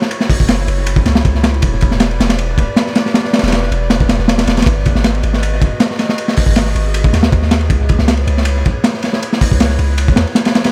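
Drum and bass with a jungle edge, this frenetic, dark excerpt runs at 158 BPM in G# phrygian, its crunchy breakbeat kit sitting up front with gritty saturation, a high-tuned snare, tight kick and dark cymbals splashed with dub echo in a small, echo-heavy room. Beneath it, a deep, sine-like 808-style bass holds long decaying notes from 0.4 to 10.3 seconds. Further back, a warbling, lo-fi tape-like pad with chorus and its own reverb sustains nostalgic chords moving through F#m7, Em7, G#m7 and C#m7.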